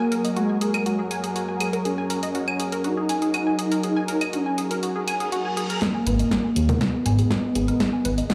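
A straight 4/4 pulse at 121 BPM drives this hypnotic, cinematic melodic techno in G# minor, cut from a longer piece, with an up-front deep house kit of claves, congas, hi-hat and a punchy, overdriven snare carrying the groove from the opening moments. A smooth, expressive sawtooth lead with chorus, vibrato, portamento and digital delay sings the melody over a lush, bright unison pad that holds sustained chords shifting from F#add9 to G#m, its chorus and phaser adding shimmer. A detuned, wave-folded pluck spins arpeggios through delay, and lead, pad and pluck all pump against the sidechain. A background reverse cymbal at 5.2 seconds ushers in a build-up with a drum fill, a filter sweep on the pluck and a deep, overdriven electronic kick sitting back in the mix from 5.8 seconds. A fat, saturated analog bass with a filter pluck enters up front at 6.1 seconds, and a huge ambient reverb, like a big sound system in a bare room, wraps the track in cavernous space.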